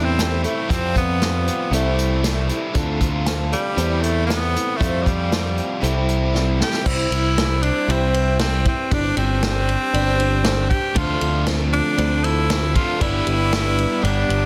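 An edgy tenor saxophone carries the melody up front over a dark, woody old ladder-braced acoustic guitar, a biting double-tracked overdriven guitar riff and a punchy picked electric bass, joined at once by a very quiet mellow electric piano with fast tremolo and a distant, roomy acoustic drum kit played with bundle sticks, whose fill at 6.3 seconds brings in a very quiet, reedy gut-string chamber string section holding sustained chords while the overdriven guitar drops out until 10.9 seconds, giving this wistful, reflective folk rock and heartland rock passage a dense, heavily limited sound in a small room with light reverb.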